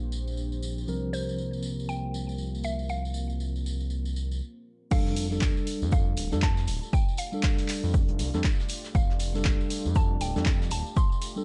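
Swung sixteenths at 119 BPM in 4/4 drive this soulful deep house cut in F major, where a moody, detuned ambient pad and mellow tine electric piano stabs open under filter sweeps, pumping together with a smooth, gliding sawtooth bass over a jingly tambourine; a woody, warbling FM mallet pluck carries the melody with chorus and digital delay from 1.1 s, and after a brief stop at 4.4 s the drop lands at 4.9 s with an up-front, punchy, tape-warm kick, an analog drum machine's crash, handclaps and hi-hat, and a very quiet brushed kit of hi-hat, shaker and snare, all within a dark, dry production.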